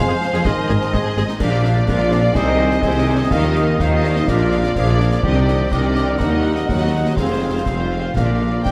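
Bathed in the wet reverb of a scoring stage, this adventurous, triumphant excerpt of a heroic adventure film score moves at 125 BPM in Bb mixolydian, with a clear, intense violin section carrying the melody over second lines from bright clarinet, mellow cor anglais, a hollow silver flute and a focused, very quiet second violin section, while a lush viola section accompanies, a mellow French horn section and a close-miked trombone section hold sustained chords, a dark trumpet adds soft stabs, a punchy tuba joins cellos and double basses on the bass, concert snare, bass drum and dark clash cymbals play from 0.2 seconds, and articulate hard-mallet timpani strike Bb2 at 8.1 seconds.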